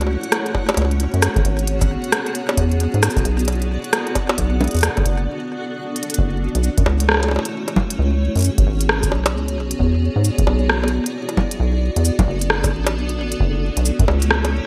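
A swung sixteenth-note groove in 4/4 drives this intricate, glitchy IDM fragment, taken from a longer piece. An organic electronic drum kit of bongos, congas, rim clicks, shaker and crisp hi-hats sits up front with gated reverb and delay, while a deep analog electronic kick joins at 0.5 seconds. A rubbery, saturated acid bass with a resonant, square-wave filter pluck anchors the low end, dark and forward in the mix. Above it, a cloudy granular pad holds blurred, detuned chords cycling through F#m7, C#7sus4, E9 and Bm7, its shimmer reverb and moving notch keeping it evolving. A reversed, dreamy texture floats in the background until a brief break at 5.3 seconds, and a drum fill at 6.0 seconds launches the second section. The bright 1980s-style digital production carries a light overall reverb.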